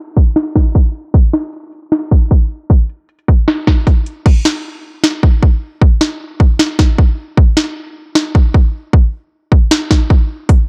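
A hard-hitting electronic trap drum kit sits up front in this menacing half-time hip hop excerpt at 154 BPM in 4/4, its hard-clipped kick, sharp snare, metallic hi-hats and crash cymbal roughened by overdrive and vintage 12-bit sampler grit. A filter sweep runs through the opening 4.3 seconds, then the hi-hats are muted as the second section begins. The mix is low-pass filtered and set in light reverb.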